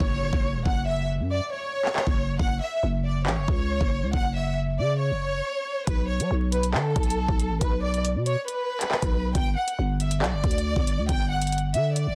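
A downlifter sinks into the background over the first 2.4 seconds as a lush, bowed violin section sings an expressive, vibrato-rich melody above a growling, buzzy 808-style bass and an electronic drill kit of knocking kick, bright hi-hats and handclaps, all set in a break that runs to 5.9 seconds. This tense, ominous drill excerpt moves at 138 BPM with a half-time feel in F# phrygian, the strings, bass and drums sitting up front. A digital ambience carries a vinyl crackle, and the dense, heavily limited modern master keeps the sound tight and forceful.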